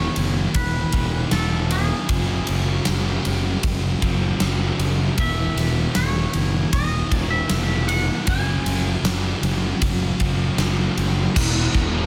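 Blissful and dreamy, this 12-second excerpt of shoegaze-tinged dream-pop rock at 78 BPM in E major, slightly flat of standard pitch, drifts between Esus2 and F#sus2 as a clean, twangy electric guitar carries the melody through tape echo over a hollow-bodied semi-hollow guitar riff bathed in reverse reverb and a thick fuzz guitar with subtle chorus, while a growly, punchy fuzz bass and a huge, up-front arena drum kit with bright cymbals and a pumping hall sound drive things forward, before a dark, double-tracked crunchy guitar and a faint jingly tambourine slip in at 11.4 seconds as the harmony lands on E.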